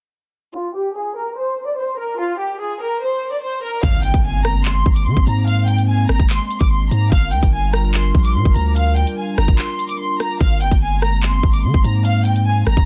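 This is a dense, heavily limited modern mix with a dry, close sound. The menacing, ominous half-time drill cut opens at 0.5 seconds with a bowed studio violin section alone: rich, smooth and even, with vibrato, carrying the melody through a low-pass filter sweep and digital delay. At 3.8 seconds a very quiet electronic impact marks the arrival of the up-front drill kit, with its hard-clipped kick, warm hi-hats, handclaps and rim clicks, alongside a deep, long 808-style sine bass that strikes fast, decays, and stays mellow. Just after, a dark, moody analog pad of detuned square, sawtooth and triangle tones, with a sub octave and ring modulation, fades in slowly under chorus and phaser to hold sustained chords moving between Abadd9 and Gm7. A brief break at 9.6 seconds interrupts the groove before the passage resumes and cuts off mid-piece.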